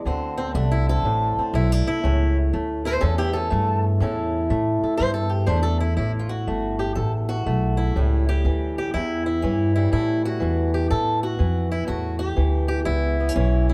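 This acoustic country blues cut from a longer piece has a gritty, rollicking mood, moving at 122 BPM in 4/4 with a swung eighth-note feel in A mixolydian. A fingerpicked steel-string acoustic guitar carries the melody up front, its old strings giving a boxy, woody tone wrapped in plate reverb. Its solo lead fills the opening stretch through 6.0 seconds before the music moves into a new section. An upright bass, plucked with gut strings, sits equally close and adds a dark, thumpy low end. The harmony shifts from D7 to A7 at 2.0 seconds, and a light reverb surrounds the pair.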